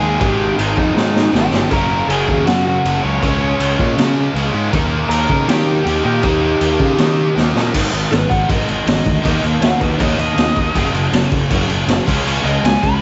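This energetic, upbeat punk rock fragment opens with a dark, overdriven lead guitar from a small cranked amp carrying the melody over a bed of picked rhythm riffs: a bright, crunchy guitar in the background and two very quiet distorted guitars, one compressed and one double-tracked. Underneath, a fuzz-laden picked electric bass drives the low end, while a raw garage drum kit sits up front with a punchy kick, a medium-tuned snare and crash cymbal, its sound saturated, gritty and rolled off at the top. The first stretch moves in a half-time feel, with a drum fill near 1.0 seconds and another just before the change. At 7.7 seconds the half-time feel ends and the lead guitar breaks into a solo over a straight groove. A small room ambience and the muffled character of a home cassette recording give the whole thing a lo-fi immediacy.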